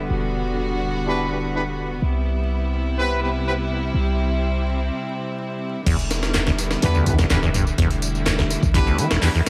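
A rubbery, resonant acid bass riff with lush chorus and dub echo sits up front when the drop lands at 5.9 seconds in this swaggering, funky 125 BPM breakbeat cut in E minor, joined by a gritty, compressed sampler-style drum kit with a thumpy kick and high-tuned snare, plus tape-warm tambourine and handclaps in the background. From the start, intimate bowed chamber strings hold sustained Em7 and Cmaj7 chords with sidechain pumping over a boomy, mellow 808-style bass, and from 1.1 seconds a tight, close-miked jazz horn section adds stabs through analog delay. Vinyl crackle and an echo-heavy mix with light reverb round out the sound.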